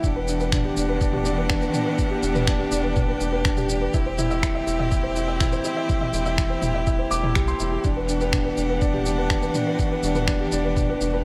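This melancholic, cinematic piano and strings electronica fragment in E minor opens with its full band together at 123 BPM, led by an intimate felt-muted upright piano riff, soft and mellow with audible action noise and digital delay, sitting up front over sustained chords from a rich string quartet with vibrato and portamento. The strings and a round, deep analog bass both pulse with sidechain pumping, while a muffled, thumpy electronic kick drum and an organic electronic kit of finger snaps, shaker and toms carry the straight 4/4 beat in small room ambience. The harmony moves from Em7 to C/E at 3.9 seconds and back to Em7 at 7.8 seconds, under a light digital reverb.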